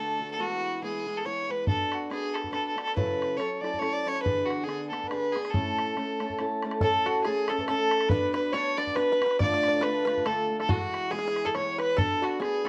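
A worn, warbling cassette sound with gently drifting pitch and light reverb frames this bright, rollicking excerpt of a Celtic waltz in A major, moving at 140 BPM in 3/4 with a lilting swing. Up front, a single bowed fiddle carries the melody with a biting, earthy tone, light vibrato and an airy bow, sitting close to the listener. Beside it, a picked old ladder-braced acoustic guitar supplies boxy accompaniment, with audible finger squeak, across a harmony that moves through chords such as Bm, F#m7, E7 and a striking Dm. An open, boomy bodhran joins at 1.7 seconds, its sound suggesting a small room. When the melody begins again at 6.8 seconds, a twangy fingerpicked banjo adds a percussive second line in the background, joined very quietly by a tine electric piano that is slightly out of tune and lightly overdriven through a combo amp.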